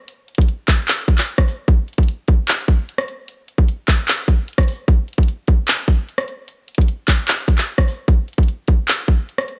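Hip hop at 150 BPM in a half-time feel, this short excerpt cut from a longer piece carries a menacing, melancholic mood. A trap drum kit plays throughout, from 0.1 to 9.6 seconds, with handclaps, hi-hat, kick drum and rim click; its electronic, produced sound features a hard-clipped kick and bright hats, re-recorded in a small room and placed up front. The kit carries a cassette tape treatment, and the home recording on cassette keeps the sound dry, with little reverb.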